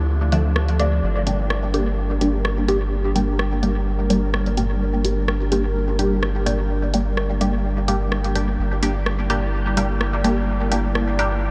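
A dreamy mix soaked in a huge ambient reverb gives this short dub techno passage, cut from a longer piece, a nocturnal, hypnotic haze in a steady 4/4 with a light swing on the sixteenths. A deep, round sub bass sits up front from the very start, while an airy, breathy pad holds sustained chords beneath a filter sweep and a gentle chorus shimmer. From 0.3 seconds, muted, dark chord stabs with a detuned sawtooth bite and a quick filter pluck move through a phaser and trail off into dub echo. A tape-warm analog drum machine keeps time with filtered hi-hats and a rim click, its hits also spilling into echo. Far back in the mix, a very quiet, bubbling texture steps through random resonant filter changes, adding restless motion under the pull between minor chords.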